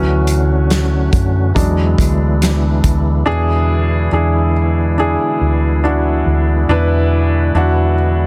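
A woody, intimate upright piano takes a solo through the opening 3.3 seconds, its action noise audible up front, in this tender, heartfelt pop ballad at 70 BPM in a straight 4/4, cut from a longer piece and moving from Dmaj7 to E7. A smooth, clean tonewheel organ holds sustained chords with chorus vibrato, key click and a stopped rotary speaker, while a dark, round hollow-body electric bass sits up front. A small-room acoustic drum kit with a fat snare and punchy kick plays only from 0.3 to 3.0 seconds, all set in light studio reverb under a dense, heavily limited modern master.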